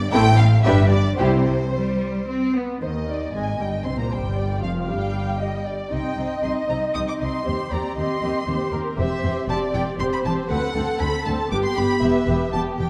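Quick classical-period string orchestra music in C minor, this graceful, spirited passage moves at 116 BPM in 3/4 with a rubato feel, cut from a longer piece. A warm violin section carries the melody with vibrato, a soft attack and a smooth top, while a second, darker violin section sings a lush, expressive second line just beneath it. The dark viola section supplies smooth, even accompaniment, and the rich cellos sit in the background alongside a distant chamber double bass section whose soft-attack tone anchors the low end. The brief opening gives way at 2.8 seconds to a longer passage that moves from C minor through a rootless Ebmaj9/F and C/E to D7 and G before settling on E minor near 12.0 seconds. A scoring-stage reverb with a 1.6-second decay wraps the ensemble in a dark, warm production.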